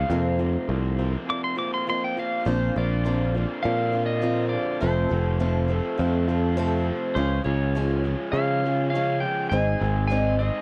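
A compressed, clean pedal steel guitar opens this cut from a longer folk rock and heartland rock piece with a solo that runs to 2.5 seconds, its fingerpicked slide lines and volume swells riding high over the band. The tune moves at a straight, steady 102 BPM in 4/4, tuned slightly flat to A4 = 436 Hz, with an open-road, jangly mood. A boxy acoustic archtop guitar, finger squeak and all, plays picked accompaniment while a lo-fi, double-tracked garage guitar drives an overdriven riff. Beneath them, a growly, up-front picked electric bass anchors the low end, a woody upright piano sits very quietly in the mix, and a tonewheel organ holds sustained chords in the background through a slow rotary speaker. The harmony moves from Fsus4 into Bbadd9 at 2.5 seconds, then through F, Db and Ab. The sound is dry and close, with little reverb, in the manner of a 1970s studio recording.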